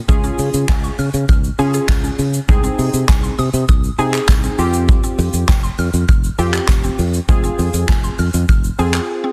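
A confident, energetic dance-pop excerpt in F minor at 100 BPM opens with the full groove at once: a vintage brush drum kit with a punchy kick, medium-tuned snare, handclaps, hi-hat and shaker sits up front with a rolled-off top and a small-room, acoustic character. A growly, direct fingered electric bass plays beside it, pumping against the kick. Warm analog keys carry the accompaniment with a round, detuned blend of square, sawtooth and triangle tones, a filter sweep and chorus, breathing with the same sidechain pulse. Further back, a woody, nasal FM synth pluck with a noise layer spins arpeggios through chorus and digital delay, and a jingly tambourine joins very quietly at 0.7 s, close and dry. The chords move from Db to Ab/C, Fsus2 and Fm under a dense, heavily limited modern master with little reverb, before a break at 9.1 s.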